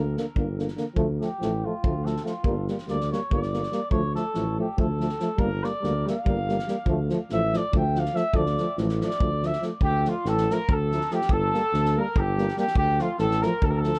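A lightly reverberant, roomy recording opens on a restless, virtuosic stretch of Balkan brass-band folk in D minor. It moves at a brisk 285 BPM counted in eighths in a straight 7/8, with chords alternating between G minor and D minor. A mellow tuba carries the bass, with light vibrato, sitting up front yet distant. Two euphoniums fill out the accompaniment in classical style: one mellow, the other warm and punchy with a touch of vibrato. A loose acoustic drum kit from a small room joins at 0.2 seconds, with a punchy kick, a fat snare and a rolled-off top. From 1.2 seconds a cup-muted cornet, veiled and vibrato-laden with tape echo, takes the solo melody up front, and at 9.8 seconds a mellow trumpet adds a second line in the closing section of this fragment from a longer piece.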